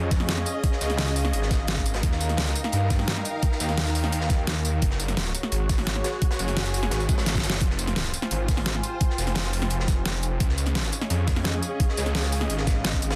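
Dark and aggressive, this 13.2-second excerpt of technical drum and bass at 172 BPM drives an overdriven, knocking electronic kick and a layered dubstep kit with deep snare and bright hats up front, over a very quiet, gritty breakbeat kit, a thick detuned saw bass, a moody wave-folded analog pad and a biting bowed string section that both pump with the sidechain, moving through Dbadd9, Eb, Gbsus2 and Fm, with a reverse cymbal at 7.1 seconds and a drum fill at 7.3 seconds.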